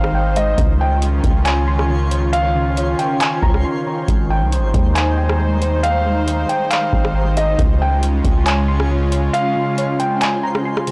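Atmospheric cloud-rap hip hop at 137 BPM in a half-time 4/4 feel, this dreamy, blissful excerpt drifts between Abmaj7 and Dbmaj7 chords. A felt-muted upright piano carries the melody between Eb5 and Bb5, its intimate, muffled tone revealing audible action noise and softened further by a low-pass filter and tape echo. Beneath it, an airy, breathy pad holds sustained chords with chorus, while a soft, round pluck sits in the background playing dark, wave-folded arpeggios through chorus, filtering and tape echo. A booming analog drum machine sits up front with a deep kick, metallic hats, handclaps and rim clicks, joined by a boomy, sine-based 808-style bass with tube saturation that drops out at 9.3 seconds, when the kick also falls silent. A twinkling granular texture adds sparkling, octave-up shimmer in the background, and a brief break from 3.6 to 4.1 seconds interrupts the flow. The whole mix is blown-out and overdriven, with light reverb around it.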